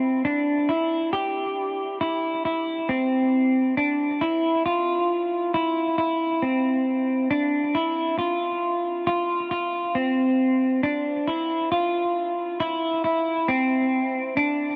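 Ethereal and blissful, this short dream pop excerpt drifts at 68 BPM in a straight 4/4, tuned slightly low to A4 = 438 Hz. A lone clean electric guitar carries the whole passage from 0.0 to 14.8 seconds, sitting up front with a bright, twangy, compressed tone between C4 and G4, dressed in lush chorus and digital delay. A huge ambient reverb with a 9.4-second tail surrounds it, turning each picked note into a glowing haze.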